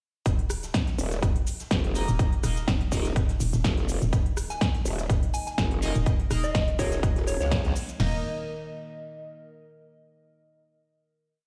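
A bouncy, gritty bass house piece at 124 BPM in 4/4, riding a lightly swung sixteenth-note groove: an overdriven big-room dance kit drives a punchy four-on-the-floor kick with snare, toms and crash, while a second layer of the same kit adds crisp programmed hats, shaker, rim clicks and a backbeat snare. Buried beneath them, a very quiet, dry acoustic cocktail kit with a high-tuned snare runs a looped breakbeat with edits. A hollow, knocking FM bass plays chopped phrases on Eb1 from 0.3 seconds, and at 1.0 second a growling, saturated unison bass joins, its formant-filtered wobble changing speed as it answers the other bass. Above them, a deep, moody analog pad holds sustained, detuned chords, band-passed sawtooth stabs with a moving notch and tape echo arrive at 2.0 seconds as sparse parallel shapes, and a soft, pure FM bell with 12-bit grit offers short answering phrases between 4.5 and 7.5 seconds. 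Sidechain pumping breathes through the pad, basses and stabs, the drop carries a band accent at 7.5 seconds, and a final chord rings out to the end in the large reverb of a bare room heard over a big sound system.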